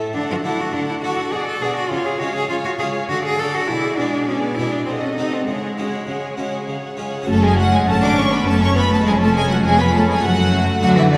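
Classical in a baroque concerto style, this dramatic, driving movement in F# minor moves at 101 BPM in a straight 3/4, heard as a short cut from a longer piece. A close, up-front solo cello carries the lead with a rich, even vibrato tone. A close violin section sings a lush melody high above it, while a second violin section with a smooth top adds an inner line. A distant viola section and a plucked, full-bodied Flemish-style harpsichord fill out the accompaniment in the background, over an expressive chamber cello section on the bass. At 7.3 seconds a double bass section joins underneath as the harmony settles from chromatic, diminished colours onto F# minor. The whole ensemble sits in the lingering, wet reverberation of a church or concert hall.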